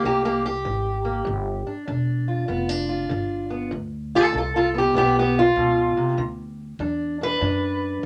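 A moderate studio reverb gives this short clip a close, comfortable room around its two players. It's an acoustic country blues duo in G mixolydian at 98 BPM in 4/4, with a 66% swing on the eighth notes that keeps the soulful mood loose and laid-back. A fingerpicked steel-string parlour guitar sits up front, dark and boxy in tone, carrying the melody as a solo across the whole 8.1 seconds, ranging from G2 up to B4. Beneath it, an upright bass played pizzicato on steel strings adds a woody low line from E1 to F#2, set further back in the mix. The harmony moves from C7 to G7 at 1.3 seconds, then lands on D at 6.2 seconds before the clip is cut off mid-piece.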